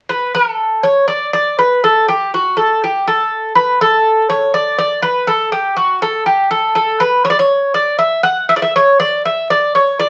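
A solo Greek bouzouki opens at 0.1 seconds and carries this short cut from a longer Greek folk piece on its own until 10.1 seconds. The playing is bright and uplifting, set in D major and moving in an asymmetric 7/8 metre at 242 BPM counted in eighths, with a straight feel. The picked double strings give a metallic edge, and some octave-doubled courses add body to a line that stays between F#4 and F#5. The bouzouki sits up front in a moderate studio reverb. The sound carries the character of a very old 78 rpm record, with vinyl crackle running beneath the strings.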